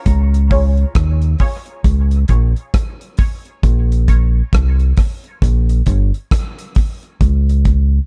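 A round, punchy fingered electric bass sits up front in this spacious, hypnotic dub reggae cut from a longer piece, its dark, direct-and-amped tone carrying the low end with a lilting sixteenth-note swing. Beside it, a damped 70s acoustic drum kit plays hi-hat, kick and rim click, sounding dry with a tight kick and a rolled-off top. Set much further back, a muted, detuned sawtooth chord stab appears at 0.5 seconds and drops out by 4.3 seconds, its mellow, plucky hits thickened by chorus, thinned by a high-pass filter and trailed by dub echo while a filter sweep reshapes it. The harmony rests on a single chord before falling away at 3.6 seconds, and once the stab drops out, bass and drums carry the groove. A small room ambience and a dark, warm production wrap the short passage in a hazy, enveloping atmosphere.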